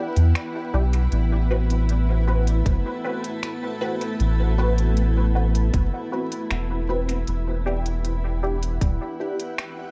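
Ambient dub with a meditative, hazy mood, cut from a longer piece, where a cloudy, granular pad drifts over Em7 and Am69 harmony alongside muted, detuned chord stabs treated with phaser, chorus and dub echo, while a bubbling, resonant stepped-filter texture sits in the background. A deep, round sub bass sits up front from 0.2 seconds with a kit of finger snaps and smooth hats carrying dub echo, and a tight electronic kick joins at 2.7 seconds. The echo-heavy mix is dusted with vinyl crackle.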